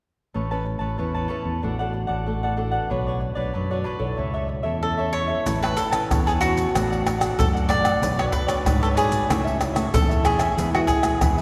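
A picked cavaquinho and a small, fingerpicked nylon-string guitar open this lively, sunny samba and choro fragment in A major at 94 BPM, joined almost at once by a round, up-front fingered electric bass as the chords move through Aadd9, D/A, Bmadd9 and A/C#. At 4.8 seconds a crisp second cavaquinho takes the melody, and from 5.5 seconds maracas, a tight surdo, pandeiro and tamborim arrive close, dry and hard-handed at the front of the mix. The recording sits in a church or concert hall with a long cathedral reverb, and the passage closes on an E chord.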